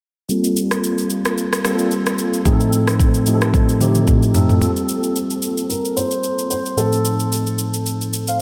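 Amapiano in a deep, hypnotic mood, this short cut from a longer piece rides a swung groove, with a mellow, clean tine electric piano carrying Gm11 and F7/A chords up front through ensemble chorus and a low-pass filter that sweeps across the opening half. An electronic, produced drum kit sits close alongside it with a deep kick, rim click, shaker and toms, and a drum fill from 3.5 s. At 4.6 s a clear, natural grand piano adds a brief melody, dressed in lush chorus, a low-pass filter and analog delay, before dropping out at 7.5 s, while another filter sweep carries through and the whole sits in light digital ambience.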